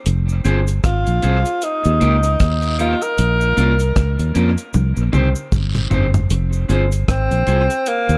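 A distant, roomy tenor saxophone with light vibrato and tape echo carries the solo melody from 0.9 seconds in this meditative, laid-back roots reggae piece at 77 BPM in F minor with a swung 16th feel, over a round, punchy, foam-muted fingered electric bass, a deep, dry drum kit with a tight kick, hi-hat, rim clicks, toms and a fill from 4.7 seconds, close cabasa and guiro, and a dark, slightly broken-up picked electric guitar with tape echo, as the harmony cycles through Fm, Eb, Bbm and Cm in an echo-heavy mix with small room ambience.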